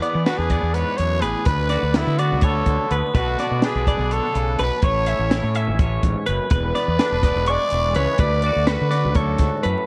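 Intricate and bright, this excerpt of math rock and midwest emo moves at 250 BPM counted in eighths, in a straight 7/8 set in D lydian. A growling trumpet carries the melody from 0.3 seconds, its raspy, gritty tone with vibrato sitting up front in a pop-style solo voice. Beneath it, a twelve-string electric guitar spins high arpeggios with a bright, twangy, compressed clarity, bathed in spring reverb and analog delay, while a twangy electric guitar supplies clean, picked accompaniment thickened by ensemble chorus. A fuzz fingered electric bass growls with overdrive, and a compact cocktail drum kit of hi-hat, kick and high-tuned snare sounds dark and rolled-off, roughened by vintage 12-bit sampler grit. The chords cycle through E7, D6, Bm7 and A in a moderate studio reverb, accompanied by vinyl crackle.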